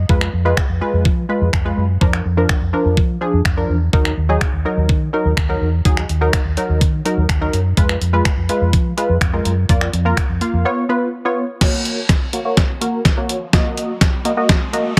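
A detuned 8-bit drum machine sits up front in this driving, confident dance-pop cut at 125 BPM in Eb harmonic minor, its thumpy kick, snaps and soft-clipped snare carrying a tape-warm, small-room character, while a foam-muted vintage electric bass pumps darkly beneath a punchy, ring-modulated sawtooth polysynth comp that plucks through chorus and a low-pass filter over chords moving from Fdim to Bb/F and Ebm. The bass drops out at 10.6 seconds for a short break on Db7, and from 11.6 seconds a drum fill and a filter sweep on an analog polysynth drive a build-up over Gb and Ebm. A background riser enters at 12.8 seconds, all under light reverb and a dense, heavily limited master.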